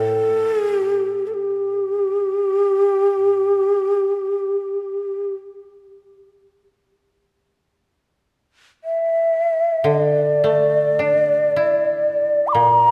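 A breathy, hollow shakuhachi carries the melody up front, its end-blown bamboo tone showing a crisp, chiffy attack, vibrato and lifted highs across a range from G4 to D6. Beneath it, a koto played with fingerpicks supplies accompaniment in a lower register, its woody, dry sound sitting quieter in the balance. This Japanese traditional chamber music unfolds in free time, with an austere, still mood. Both instruments sound together for the full 12.9 seconds of this short cut from a longer piece. A moderate church-like reverb with a long three-second decay surrounds the performance, lending the space a resonant depth.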